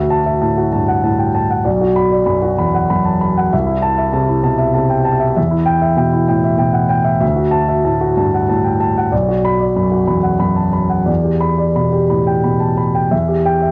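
A dark concert grand piano plays alone through this wistful, intimate neoclassical minimalist fragment in a rubato 6/8, its mellow, smooth tone carrying deep bass and audible action noise up front, with the vintage grain of cassette tape and a moderate studio reverb as it moves from Dadd9 through Bm and Am/C to settle on Em near 13.1 seconds.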